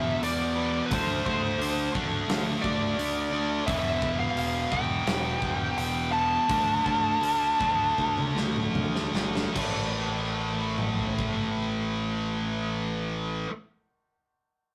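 Epic and relentless, this heavy metal excerpt moves at a slow 74-87 BPM in straight 4/4, with an up-front high-gain lead guitar carrying the melody until 8.7 seconds over two distorted rhythm guitars, one scooped and forward, the other heavy and set in the background, both riffing on power chords around E5 and D5. A growling, overdriven picked bass adds punch beneath them, while a big acoustic rock kit with bright cymbals and a punchy kick enters at 0.2 seconds, slows with the band from 3.7 seconds and plays a fill leading into an A5 chord at 9.6 seconds. Light reverb and tube saturation give the whole a rough rehearsal-room feel.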